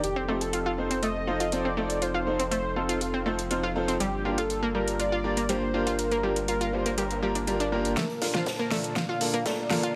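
A straight 4/4 pulse drives this expansive, euphoric progressive house passage, cut from a longer piece. A deep house drum kit supplies a fat snare and metallic hats with a tape-tinged edge in small room ambience, while a very quiet soft-mallet acoustic kit sits beneath it. A round, dark analog bass, sidechain pumping like most of the synths, holds the low end until 7.9 seconds. Above it, a chorused, detuned analog pad with a slow attack sustains the chords and a warbling, vintage analog pluck spins bright arpeggios with dub echo. A thick, bold unison lead carries the melody with vibrato, and an intimate concert grand piano with audible action noise and a boxy body adds low-pass filtered stabs that undergo a filter sweep from 8.0 seconds. At that point a build-up begins with a drum fill and a punchy, high-passed electronic kick in the background, as a very quiet swell and riser, entering at 7.3 seconds, lifts the moment within a lush hall reverb.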